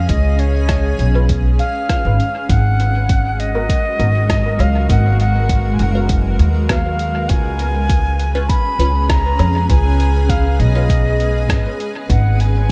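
Meditative and hazy, this ambient dub passage at 100 BPM in G# dorian, cut from a longer piece, rests on a woody, thumpy upright bass plucked pizzicato up front, a deep electronic kick and a muffled, pitched-down lo-fi sampler kit of hi-hat, rim click and woodblock, with both drum parts carrying studio reverb. A blurred, evolving granular cloud pad holds sustained chords moving from C#7 to G#m9, while a distant, airy silver concert flute carries the melody with vibrato and dub echo. From 1.2 seconds a muted, nasal filtered chord stab sits in the background with phaser, lush chorus, 12-bit sampler grit and dub echo, all within a dark, warm production.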